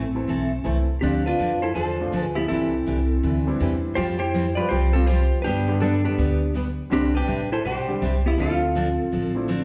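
A swinging 163 BPM groove in 4/4 drives this cheerful western swing snippet in C major. A thumpy, woody upright bass sits up front beneath a bright, full-bodied picked acoustic guitar and a warm upright piano in the background, while a clean lap steel carries the melody with slide and volume swells. A dark hollow-body jazz guitar adds a second line from 1.0 seconds, all heard as a band playing live in one room with a wet, large studio reverb.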